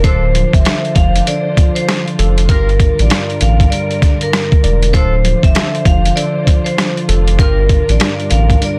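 This short boom-bap hip-hop cut opens with everything at once: a gritty, pitched-down sampler-style drum kit with a thumpy kick, medium-tuned snare, rim click and hi-hat sits up front at 98 BPM, swinging its sixteenths in a reflective yet tough D minor groove. Beneath it, a thick, saturated sine sub bass holds deep sustained notes with a fast attack, dropping out at 8.6 seconds. A worn, slightly out-of-tune tine electric piano colours the accompaniment with a mellow, cassette-tinged tone. Over it, a hard-mallet vibraphone with its motor off carries the bright, metallic, ringing melody through a digital delay. Dark, woody strings bowed sul tasto with vibrato add lush sustained chords, while a distant, roomy jazz horn section places warm stabs in the background until 7.6 seconds. The harmony rocks between Dm7 and Gm7 in a dense, heavily limited mix with light reverb.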